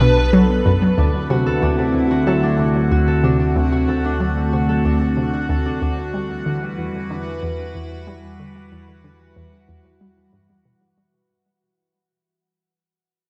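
An up-front, morphing wavetable pad with phaser and shimmer reverb opens this expansive, hypnotic stretch of ambient space music, joined at once by a detuned analog pluck riff with chorus and tape echo, a deep round bass, and a bubbling, resonant stepped-filter texture. From 1.0 to 8.6 seconds a ringing, fingerpicked concert harp adds arpeggios through shimmer reverb and tape echo while the harmony moves from Bm7 to D7 and settles on Emadd9 at 6.1 seconds. The bass fades out as a filter sweeps across the synth arpeggio sound, all set in a dark production with the lingering tail of a concert hall.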